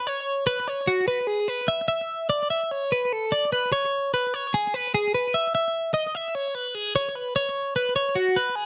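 In a straight 9/8 at 297 eighth-note beats per minute, this playful, bright rock fragment features a clean, compressed twelve-string electric guitar playing solo between F#4 and E5 for its 8.7 seconds, picked up front with slapback echo and light reverb in a dry, close 1970s-style studio sound tuned to A4 = 441 Hz.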